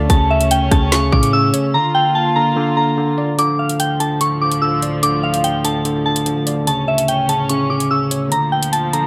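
Cold and menacing, this half-time drill hip hop excerpt at 146 BPM in D harmonic minor sets a soft, warbling FM synth bell melody with chorus, phaser and tape echo over bright tine electric piano and reedy bowed strings, while a punchy, sine-heavy 808 bass sounds only until 1.5 seconds and the up-front drill kit of hard-clipped kick, woody snare, rim click and metallic hats drops out from 1.7 to 3.4 seconds, all in a dry, gritty recording with digital ambience.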